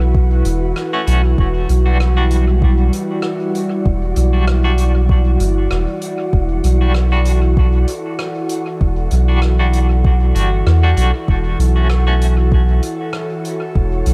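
A dry mix with little reverb puts a deep, round sub bass up front, its soft tube-saturated tone anchoring this hazy ambient dub cut from a longer piece, moving at 97 BPM in E dorian with a light 16th-note swing. A breathy, full-bodied pad with chorus holds sustained chords from F#m into a long stretch of Em9, settling on F#m/E at 11.3 seconds, while a dark, wind-like tuned noise texture hovers in the background. A soft electronic kick, a distant, roomy mallet kit of hi-hat and rim click with dub echo, and twangy clean electric guitar stabs carrying tremolo and echo, entering at 0.9 seconds and stopping at 12.3 seconds, fill out the deep, drifting groove.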